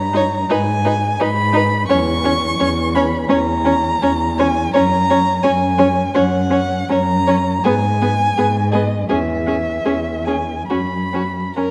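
A close, warm solo violin sings a lyrical, expressive melody with vibrato and portamento over a dark, soft-edged cello bass at the very start of this serene, slow romantic string quartet excerpt, which moves with rubato at 68-87 BPM as a rich, focused viola and a smooth, shadowy second violin join within 0.2 seconds, the parts bathed in a wet scoring-stage reverb over a G# minor, C# minor and F# harmony.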